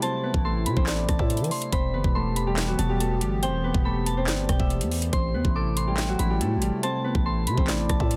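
A fingerpicked Celtic harp opens this dark, tense drill excerpt, its mellow, ringing melody up front with a digital delay, joined from the start by a hollow, airy pad holding sustained chords in the background and a vintage FM synth bell tracing a pure, warbling second line above, both treated with chorus. The drill kit arrives at once in a half-time feel, with a knocking kick, a sharp snare, metallic hi-hats, handclaps and rim clicks, all electronic and tape-tinged and sitting close to the listener. At 0.3 seconds a growling, buzzy 808-style bass enters, up front with a fast attack and decaying notes. The harmony moves from Am to Em and back to Am at 5.1 seconds, keeping the mood brooding. The mix is dry and dense, with a heavily limited modern master that keeps the drums and bass forceful alongside the delicate harp and flute-like pad.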